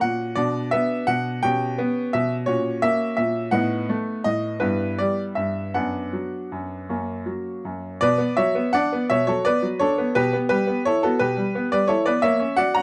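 Set in a dark production with light reverb, this short cut from a classical-period piano sonatina has a serious, elegant mood, flowing in 6/8 with supple rubato. A solo baby grand plays throughout, its tone bright and natural with a short sustain, sitting up front as it spans a low-to-high range. The opening phrase moves through harmonies in B minor to a dominant close near 6.9 seconds, and a new section begins at 8.0 seconds, ending on a seventh chord that leaves the music unresolved.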